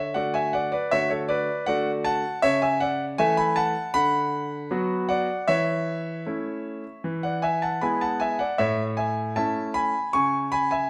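A classical-period piano sonatina excerpt in A major at 78 BPM, elegant and cheerful, played by a solo concert grand piano that sounds clear, natural and up front with deep bass across a range from A2 to C#6, moving through D, A/C#, Bm/D, A/E, E, A and C#m in a moderate recital hall reverb.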